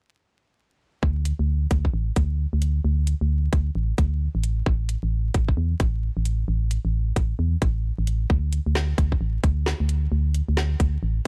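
A dry, close sound with little reverb sits under a bed of vinyl crackle in this short cut from a longer two-step UK garage track. The mood is soulful and skippy, with a 62% swing on the sixteenths giving the groove its lopsided bounce. An up-front, organ-like FM bass carries the low end from 1.0 seconds, its hollow, percussive notes striking fast and decaying into a dark tone while a filter sweep runs across it. A tight, layered electronic kick enters at the same moment and sits forward in the mix. A garage kit joins at 1.3 seconds with a woody snare and metallic hi-hats placed further back, and the drums stop at 10.9 seconds, just before the bass.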